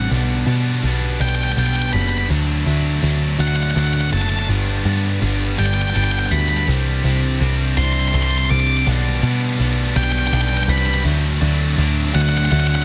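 Hopeful and euphoric, this post-rock passage cut from a longer piece builds steadily across its 12.8 seconds at a slow 55 beats per minute in a straight 6/8, set in G major. A double-tracked, bright distorted electric guitar sits up front with a picked riff, while an overdriven picked electric bass, dark, round and foam-muted, anchors the low end with a direct, up-front presence. Above them, an octave-fuzz lead guitar carries the melody high in its range, its dusky fuzz tone trailed by analog delay. The harmony moves through G/B, D, G and Csus2 before returning to G/B and D, giving the build a sense of lift. The sound is dry and close, with little reverb around the three parts.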